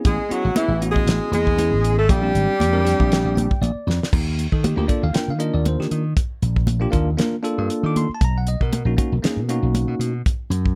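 A lightly swung 118 BPM groove in 4/4 drives this slick, bright stretch of electric jazz fusion, anchored by a punchy, up-front slap bass and a dry 70s drum kit with a fat snare, tight kick and rolled-off top, while soft-handed, high-tuned congas sit in the background. A breathy alto saxophone carries the melody with subtone, vibrato and scooped notes, joined by a distant, roomy tenor saxophone on a second line, both touched with slapback echo until they stop at 3.6 seconds. A bell-like, clean tine electric piano provides accompaniment until about 10.1 seconds and adds a fill just before the harmony shifts to Ebmaj9 at 4.1 seconds, where a drum fill leads into the second section of this clip cut from a longer piece.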